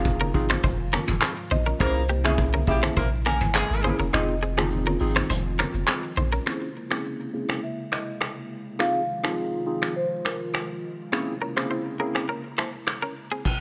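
A smooth, sultry afrobeats groove at 103 BPM in straight 4/4 opens with a woody marimba melody on rosewood bars, round analog keys with chorus, a breathy, detuned pad with sidechain pumping, a twangy, scooped electric guitar riff recorded direct, a deep sub bass with a pitch-drop attack, and a vintage brush kit, while very quiet, low-tuned congas sit distantly in the background. The harmony alternates between Fm7 and C7b9b13, and the kit blends a punchy kick, dark cymbals, rim clicks, finger snaps, handclaps, shaker, hi-hat, toms and crash in a roomy, rolled-off sound placed up front. Early on, a pop-style horn section with light vibrato adds a brief second line, and the marimba and guitar both trail delay echoes. The kick drops out at 4.1 s, then the bass, congas and guitar fall away at 6.4 s as a filter sweep carries the second half with the mellow keys, pad, marimba and brushes. The guitar riff returns at 11.4 s to close this fragment of a longer piece, all within a small room.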